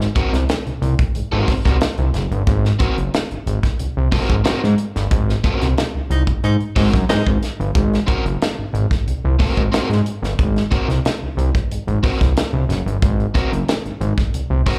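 Gritty and energetic, this funk cut at 91 BPM in Ab mixolydian rides a single Ab9 chord. Up front sit a fat, saturated, detuned sawtooth analog bass with a filter sweep and a tight acoustic drum kit with a high-tuned snare. A crunchy overdriven electric guitar with slapback echo accompanies them. A bright baritone saxophone adds a brief jazz-style line of scooped notes with light vibrato from 6.1 to 7.3 seconds during a band accent, and the performance is heard live through a club PA.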